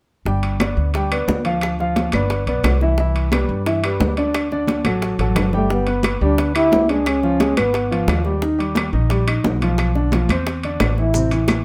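Closely miked with light reverb and crisp detail, this lively, sophisticated Afro-Cuban jazz excerpt sets a clear concert grand piano and a growly pizzicato upright bass up front over tight, high-tuned bongos, bright background congas, ringing metal-shell timbales and woody background claves; during a drum fill, a dark, breathy solo trombone with scooped notes and light vibrato enters at 5.5 s, and grainy maracas join only at 11.1 s.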